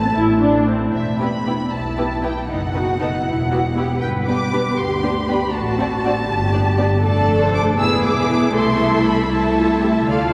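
A quick classical-period movement for string orchestra in 6/8, this stormy, dramatic passage moves at 79 beats per minute in dotted quarters with a rubato feel, set in E minor before turning toward A minor at 7.0 seconds. A muted violin section carries the melody high in its range, while a second muted violin section, soft-attacked and set in the background, plays a supporting line beneath it. A distant, lush viola section enters at 0.1 seconds with accompaniment, and muted cellos and double basses hold the bass, the basses sitting up front with a soft attack. All five sections play con sordino with vibrato, giving the ensemble a dark, veiled color. A wet cathedral reverb with a long 4.3-second decay surrounds the strings, and the recording is a short cut from a longer piece.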